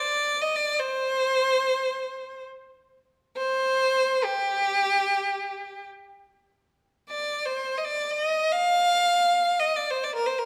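A single bowed violin carries this melancholic, longing Arabic passage in free time. Its tone is clear and focused, with vibrato, sitting up front as it moves between G4 and F5 and phrases the same material twice across 10.5 seconds. Tuned to A4 = 443 Hz and cut from a longer piece, it rings in a church or concert hall with a wet recital-hall reverb that lingers for about 1.5 seconds.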